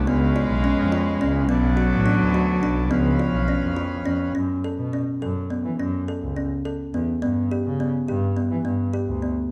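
Pensive and hypnotic, this fragment of contemporary chamber music in 5/8 sets a woody, up-front kalimba's thumbnail-plucked arpeggios over a clear, bowed double bass with vibrato, while an intimate sul tasto cello and a reedy, breathing hand-pumped harmonium hold a soft second line and sustained chords until about 4.1 s and 4.3 s respectively, all within a dark production and light reverb.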